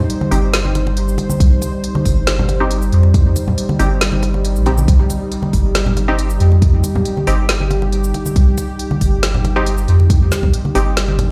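A dark, detuned analog pad opens this brooding deep dubstep excerpt, holding sustained C minor chords with a slow attack, a layer of chorus and the gritty bite of a vintage 12-bit sampler. Within the first fraction of a second a deep house drum kit with a woody snare, smooth hats and shaker settles into a half-time 4/4 feel at 138 BPM, joined by close, soft-handed congas trailing dub echo. A round, triangle-and-square sub bass sits up front beneath everything from 0.3 seconds, while a muted, detuned sawtooth chord stab plucks through a filter, its short decays smeared by chorus and dub echo. A deep, layered electronic kick arrives at 1.4 seconds and sounds until 10.5 seconds. The mix feels cavernous, as if pushed through a big sound system in a bare room with a large studio reverb, and the passage stays on a single C minor chord throughout.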